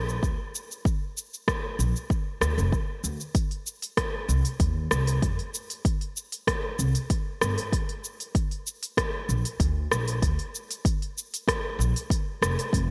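A straight 4/4 groove anchors this hypnotic, warm slice of organic downtempo, cut from a longer piece, with a crisp afro-pop drum kit of hi-hat, rim click and shaker bathed in gated reverb arriving at 0.1 seconds, joined at 0.2 seconds by a deep, up-front electronic kick drum. Beneath them, a woody pizzicato upright bass with steel strings sits up front in its low register from the very start. Light reverb and digital ambience lend the whole a bright, 1980s-style digital production sheen.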